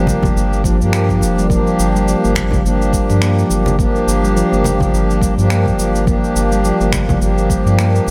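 A swung 16th-note groove at 105 BPM in 4/4 drives this meditative, mystical organic downtempo excerpt in G minor, resting on a single Gm7 chord throughout its 8.1 seconds. An overdriven electronic kick drum with a deep, roomy punch and overdriven electronic cabasa and finger snaps enter at 0.1 s, joined by very quiet, ringing acoustic congas. Underneath, a round analog bass with a dark, wave-folded tone and a fast attack holds the low end from F1 to G2. Up front, a reedy, breathing pedal harmonium carries the accompaniment, colored by vintage 12-bit sampler grit, sidechain pumping, digital delay and shimmer reverb. A stainless steel handpan plays bright, airy arpeggios with sharp finger strokes and its own digital delay. From 1.5 s a very quiet quartz singing bowl, struck with a felt mallet, adds a pure, smooth Bb4 with slow beating, all set in a light studio reverb.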